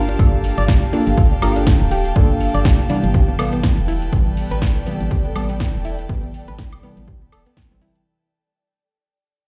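Heard as if through a big sound system in a bare room with a large studio reverb, this deep, hypnotic deep house cut at 122 BPM swings its 16ths and drifts from Gm9 to Am9 at 3.1 seconds, tuned to A4 = 437 Hz, with a fade-out that begins at 2.8 seconds. A punchy, overdriven electronic kick sits up front over a drum kit of metallic hats, snare and woodblock, while a woody, dark FM bass with tube saturation and a deep, warbling vintage chord stab with tape echo and a filter sweep all pump against the kick. A round, gentle pluck arpeggiates through cassette tape and echo, framed by a breathy detuned pad holding chords and an ethereal pad texture shimmering with ensemble chorus, tremolo and its own reverb.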